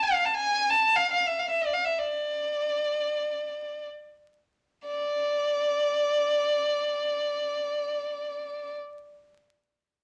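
Turkish solo violin in free time and makam nikriz on D, longing and soulful, with a single close, up-front bowed violin playing smooth, even, warm lines full of vibrato between D5 and A5 through a short fragment that shifts into a second section at 4.9 s, set in moderate studio reverb with vinyl crackle.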